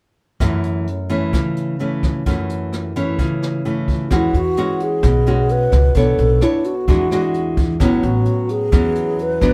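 A breathy, hollow alto flute carries the melody in this romantic, sunny bossa nova, entering at 4.1 s with a crisp attack and vibrato that give its mellow tone a lilting grace. Before it arrives, a full-bodied, fingerpicked nylon-string guitar sits up front from 0.4 s, laying down classical-style accompaniment over an F#m7 chord, alongside a jazz brush drum kit that starts at the same moment with hi-hat, rim click and a boomy kick. At 4.1 s, a woody pizzicato upright bass comes in alongside the flute as the harmony moves through E69, Bm9 and E9 before settling on A69. The tempo is a relaxed 130 BPM in a straight 4/4. A moderate small-room reverb places the group a little further back, giving this short passage from a longer piece an intimate, natural feel.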